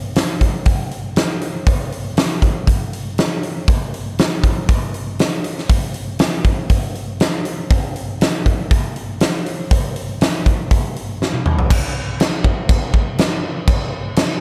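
A straight 4/4 rock groove at 120 BPM comes from a huge, natural-sounding acoustic drum kit alone, up front with a punchy kick, a fat snare, hi-hat, crash cymbal and toms, carrying a blissful, hazy mood through this short clip from a longer piece before a fill at 11.2 seconds leads into a new section that runs until the drums stop at 14.3 seconds.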